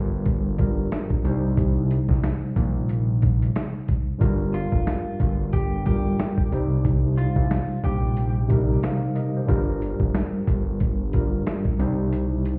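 Dark and reflective, this boom-bap hip-hop excerpt in C minor moves at 91 BPM with a swung 16th-note feel, built on a worn, slightly out-of-tune tine electric piano with light overdrive, a fat, detuned analog bass with ring modulation and a filter sweep, and a gritty, tape-toned sampler-style drum kit with a thumpy kick that drops out at 12.1 seconds, while a dark, slightly broken-up picked electric guitar adds a short delayed melody from 4.5 to 8.3 seconds, all heard muffled as if through a wall with club reverb and vinyl crackle over Gm7 and Cm chords.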